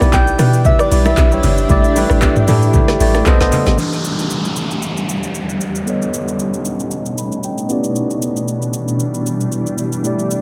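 Deep and soulful, this amapiano piece in E dorian moves at 115 BPM with a lightly swung 4/4 feel. It opens on a drop where a round, dark log drum bass and ringing bongos and congas sit under an up-front electronic afro-pop kit with a deep kick, woody snare, metallic hats, handclaps, shaker, rim clicks and toms. A gentle, keys-like FM synth lead with chorus rides over clean tine electric piano chords and a cloudy, detuned granular pad that pumps with sidechain and blurs into its reverb, moving through Em7/B, A7sus4 and B7b9. At 3.8 seconds the bass and hand drums stop and an electronic downlifter enters, and the electric piano plays a fill at 6.9 seconds, all within an echo-heavy mix of tape echo and digital ambience.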